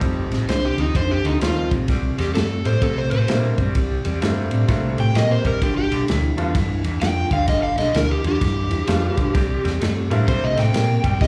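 Heard through a club PA with light reverb, this soulful, swaggering electric blues shuffle excerpt swings as it moves through F7, C7 and G7. A dark, overdriven slide guitar sits up front from 0.5 seconds, carrying the solo over a lo-fi, slightly broken-up electric guitar riff with harmonic tremolo, a round, punchy fingered bass, and a crunchy breakbeat kit whose drums are saturated and gritty with a rolled-off top. A brilliant, woody upright piano adds polished accompaniment, with plate reverb and slapback echo, until about 10.7 seconds.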